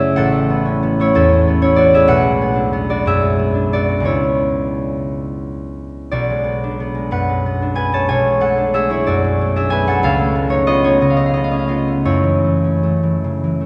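Gentle and wistful, this short classical fragment of a longer solo harp piece drifts in a rubato 6/8 as a single concert harp, fingerpicked, ringing and up front, spans a range from A1 to A5 through chords such as Bm6, C#m7, Dmaj7#11/B and C#aug7 before settling on F#m7, all bathed in a wet church reverb.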